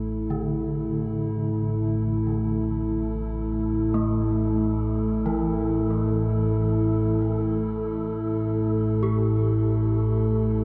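Ambient in free time, this unsettling, dark excerpt from a longer piece sets a moody, nasal analog pad holding sustained chords over an evolving, detuned analog drone, both up front with subtle chorus, while a breathy wind-like tuned noise texture fades in behind them and a gamelan-type bronze metallophone enters at 0.3 seconds with shimmering, ringing arpeggios through delay, all bathed in a huge ambient reverb and the warbling pitch drift of worn cassette tape.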